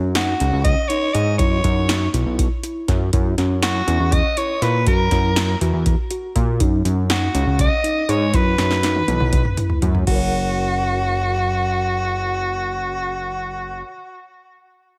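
Driving along in a straight 7/8 at 242 BPM counted in eighths, this bright, brief progressive instrumental in F# mixolydian pairs a punchy, tape-warm analog drum machine, with its deep kick and metallic hats, and a fat, detuned sawtooth bass up front, while a mellow tine electric piano arpeggiates quietly in the background through D#m7, C#m9, F#7 and Badd11 and a raspy, gritty soprano saxophone carries the solo melody with vibrato, slapback echo and digital delay, all set in light digital ambience until the drums cap a fill at 10.1 seconds and drop out as the music settles onto F#.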